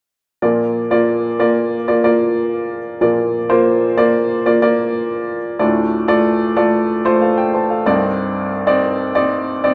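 In a straight 4/4 pulse, this short pop excerpt from a longer piece carries an anthemic, uplifting mood, with a clear upright piano playing accompaniment from 0.4 to 9.7 seconds across a broad span from C2 to A5. The piano sounds woody, polished and up front, moving through Bb, Dm and Cmadd9 chords. A stone room reverb lends a live, one-room feel, and the high end is gently rolled off.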